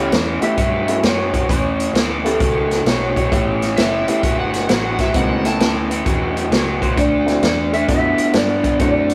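A raw, overdriven garage guitar sits up front, picking a lo-fi riff low in its range through this gritty, soulful electric blues shuffle at 131 BPM in A mixolydian, cut from a longer piece. A vintage acoustic drum kit with a punchy kick, a medium-tuned snare and hi-hat comes in at 0.1 s, its rolled-off top keeping it natural and close. Beneath them, a dark, round, foam-muted electric bass holds the low end, while a woody upright piano with audible action noise comps intimately in the background. The lead melody comes from an electric guitar through a small old amp, picked, compressed and slightly broken-up. From 3.8 to 5.7 s a bright, overdriven slide guitar played with fingerpicks adds a brief second line up high, and the harmony moves from A7 to D7 at 7.0 s, all set in a moderate stone room reverb with the rough feel of a rehearsal-room recording.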